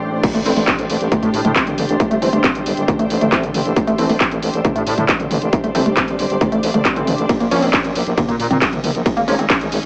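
A growling, thick FM bass sits up front in this driving, intense slice of peak-time techno, pumping against the kick from the very start and carrying through to the end. A distorted electronic kick drum and an up-front techno kit with warm hats, handclaps, ride and crash cymbals and toms drop in at 0.2 s, the kit's hats, cymbals and toms breathing with sidechain pumping, while a very quiet electronic impact marks the drop until 2.0 s. In the background, a woody wave-folded pluck plays a dark riff soaked in lush chorus and dub echo, and a cloudy, evolving granular pad hovers higher up, blurred by its own reverb. A bright, aggressive rave stab with ring modulation and detuned unison adds very quiet jabs from 0.5 s, as the harmony moves from A minor to B-flat minor late in the passage. The whole is set in a moderate stone room with a digital ambience and a small-speaker colour.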